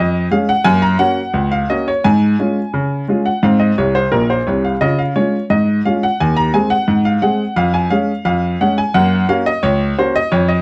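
A clear, worn baby grand piano plays a jaunty, playful ragtime passage alone in a straight two-beat feel, its intimate, up-front tone carrying audible action noise and short sustain across a span from Bb1 to Bb5. A brief fill runs from 3.8 to 4.8 seconds before the opening strain carries on to 10.6 seconds, cut from a longer piece. Light reverb and a dark production frame the instrument closely.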